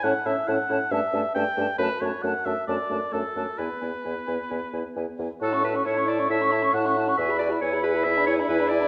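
An airy silver concert flute with a crisp attack and a distant placement carries the melody over an oboe second line with light vibrato, while a clear clarinet and a smooth-topped French horn fill in the accompaniment and a mellow, up-front bassoon anchors the bass in this spirited, lively classical-period wind quintet movement, heard in an 8.9-second cut from a longer piece with uneven, rubato beats in a moderate recital hall.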